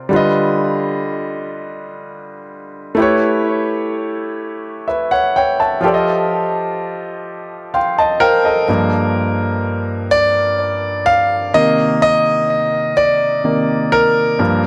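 A lone grand piano opens this sultry, late-night R&B fragment in G minor, moving slowly in 6/8 at 42 BPM through rich chords such as G7b13, A9 and F9. The piano sits up front with a clear, intimate tone and audible natural action noise, colored by a touch of tape echo and light studio reverb. A fill at 7.3 seconds leads into a solo passage from 8.7 seconds over Gm7 and Cm9, continuing until the cut at 14.7 seconds.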